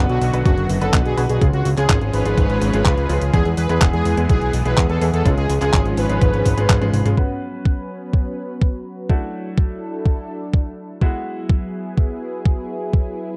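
A lush, detuned unison pad holding sustained chords opens this nostalgic, danceable italo disco excerpt, treated with chorus and phaser, alongside bright, slightly worn grand piano stabs softened by a low-pass filter. An up-front, thumpy electronic kick with overdrive arrives at 0.5 seconds and drives a straight 4/4 pulse at 125 BPM, tuned to A4 = 441 Hz. Beneath it, a fat, nasal analog bass with a saturated, evolving sawtooth edge anchors the low end, while a bold, brassy synth lead carries the melody through chorus and tape echo, its tone dark with a touch of vibrato. A clean 12-bit drum machine adds overdriven handclaps, filtered hi-hats and toms, and the first half moves through Bm, C#, E and back to C# before a drum fill and a band accent at 6.7 seconds. At 7.2 seconds the bass, brass and drum machine fall away, leaving the kick, pad and piano, with filter sweeps on the pad and piano, over Bsus2, Dadd9 and Eadd9 chords. 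The mix is dry and close, with a 1970s studio character and little reverb.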